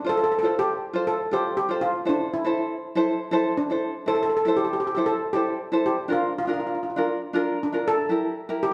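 A dark, shimmering lead steel pan, struck with hard rubber sticks, carries the melody up front in a festive, sunny calypso at 119 BPM in a straight 4/4. Beside it, a light, fingerpicked acoustic tenor ukulele supplies the accompaniment through a chord progression of F, Am, Bb and Edim. The band plays live in one room, and a wet, large studio reverb gives this short piece, cut from a longer performance, a roomy glow.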